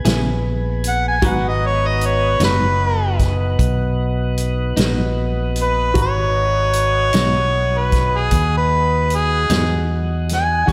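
Soulful and brooding, this slow 12/8 blues in G# minor at 51 BPM features an up-front, overdriven warm harmonica that takes the jazz-style solo melody with scooped notes and slapback echo from 0.9 s, over a round, amped fingered electric bass, a vintage drum kit with punchy kick and rolled-off top entering at 0.1 s, a smooth tonewheel organ holding chords through a slow rotary speaker, and a compressed, clean electric guitar with harmonic tremolo and a woody upright piano sitting in the background, moving from C#m7 to G#m7 in a big arena sound with moderate scoring-stage reverb.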